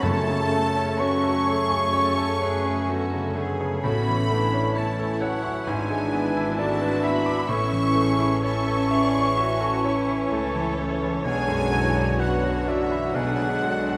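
A clear concert grand piano sits up front and carries the melody, its polished tone reaching into deep bass with long sustain and the faint sound of its action close at hand. This is a brooding, tragic classical passage at a slow 64 BPM in 4/4, played with a free, rubato feel and moving through F#m, A, E7/G# and Bm before settling on G#dim/B. A soft, sul tasto chamber violin section also carries the melody in the background, while a second, focused violin section, a pure, hollow flute, a punchy oboe and a vintage-toned clarinet play secondary lines. A mellow, very quiet bassoon and a smooth, even viola section fill the accompaniment, a dark French horn section and a faint trombone section hold sustained chords, and an intense, distant double bass section with a full-bodied cello section anchors the low end. Timpani struck with hard mallets on calf heads sound briefly from 0.0 to 1.4 seconds, close and dry. 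The whole ensemble is set in a wet scoring stage reverb that gives the passage a spacious, cinematic depth, and it is cut from a longer piece.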